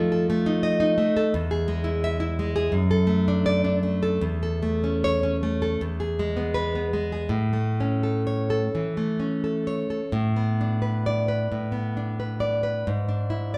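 Romantic classical guitar in A major, tender and sunny, moving with a rubato feel at 75-91 BPM in 4/4 and heard as an excerpt cut from a longer piece. A single nylon-string guitar, fingerpicked and up front, sounds full-bodied and fresh-stringed with audible finger squeak, ranging from E2 to E5 as the harmony passes from F7 through E and D/F# before settling on A at 7.3 seconds for a second section that closes on E7/G#. A wet recital hall reverb surrounds the playing, lending the short passage a sense of space.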